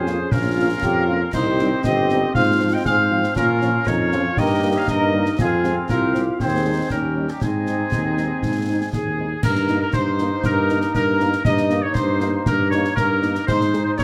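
A spirited, proud military-style march for wind band at 118 BPM in 2/4, this excerpt puts a clear, up-front cornet on the melody over a mellow tuba bass, with a euphonium second line that drops out at 9.2 seconds, airy flutes and warm woodwinds in the background, sustained trombone chords, very quiet horns, and close, dry snare, bass drum and dark clash cymbals, all in a moderate large studio reverb moving from Bbm toward Ab.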